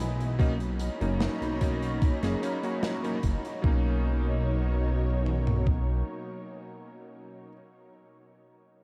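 Dreamy and nostalgic, this short vaporwave excerpt drifts at 74 BPM in 4/4 with a straight feel, resting in B major on a Bmaj9 chord that arrives at 0.4 seconds. A lush, thick unison pad of detuned sawtooth and square waves holds sustained chords from the very start, its slow attack colored by chorus, phaser and vintage 12-bit sampler grit. Beneath it, a glossy chorused synth bass with a pulse-wave and sawtooth tone and a filter pluck sits up front and mellow until 6.0 seconds. A bright, cutting electric grand piano with clangy lows and chorused unisons plays accompaniment, treated with subtle chorus and a diffuse ambient delay. The rhythm comes from a gated 80s digital drum machine, whose thumpy, overdriven kick and toms carry gated reverb, alongside a quieter big rock kit adding hi-hat and a medium-tuned snare until 3.6 seconds. A huge ambient reverb soaks the whole mix in a hazy, dreamlike space.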